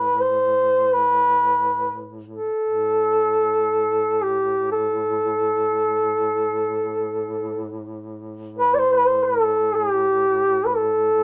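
A mellow duduk carries a solemn, longing melody between G4 and D5 up front, its vibrato and scooped notes giving a folk-style voice, while a second, much quieter duduk holds an A2 drone with its own vibrato beneath it throughout this free-time Caucasian lament fragment in A minor, tuned to A4 = 435 Hz and set in light reverb.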